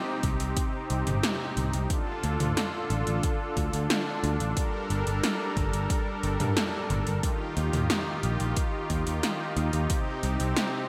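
Synthwave in G minor at 90 BPM, this nostalgic, nocturnal excerpt moves in a straight 4/4 through Cm, Dm, Gmadd9 and Ebadd9 before returning to Cm. A brassy, nasal analog pad with detuned sawtooth character holds sustained chords from the first moment, its soft attack shaped by chorus, vibrato, a filter sweep and sidechain pumping. A picked electric bass enters at 0.2 seconds, growly and bright, sitting up front with a direct, amped punch. Alongside it come 80s electronic pad drums with metallic hats and toms and snare bathed in gated reverb, plus a punchy, layered electronic kick with a tape-warm tone that drops out at 10.0 seconds. A lush hall reverb and bright 1980s-style digital production give the whole a polished, after-dark sheen.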